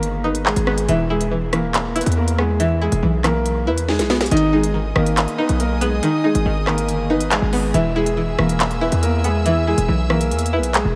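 Drill-style hip hop at 140 BPM in a half-time feel and G# minor, this cold, menacing excerpt moves between G# minor and E chords under a dreamy haze of ambient reverb and vinyl crackle. A concert grand piano with a natural, deep-bottomed tone carries the melody, touched by subtle chorus and delay, while a twangy, nasal resonator pluck with a filter sweep, chorus and phaser supplies bright, string-like accompaniment beneath it. A hard-hitting 808-style bass sits up front, punchy and heavy with a fast attack and decaying tail. The electronic drill kit brings a sharp snare, crisp hi-hats, handclaps and rim clicks, and a drum fill at 3.9 seconds leads into the second section. At 4.3 seconds a chamber string section enters with sustained, bowed chords, its reedy gut-string tone and light vibrato lending a period flavor to the dark groove.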